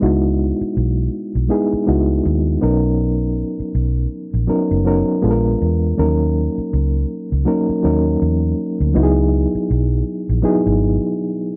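A reedy, mellow electric piano provides the accompaniment in this lush 1970s-style soul fragment, its fast tremolo and tube saturation giving the chords a shimmering, slightly gritty glow as it plays through its built-in speakers from the start to the final moment at 11.6 seconds. Beneath it, a vintage foam-muted fingered electric bass sits up front with a dark, round, punchy amped tone, holding the low end until it drops out at 11.0 seconds. The groove moves at an unhurried 80 BPM in 4/4 with a light swing on the sixteenths, and the tuning sits at A4 = 436 Hz in C# dorian. The harmony drifts from C#m11 through Bmaj7, A#7b9 and D#m7 before returning to C#m11 as a new section opens at 9.0 seconds, lending the piece a cinematic, silky mood. The sound is a dry, close studio recording touched with light reverb, and the clip is cut from a longer piece.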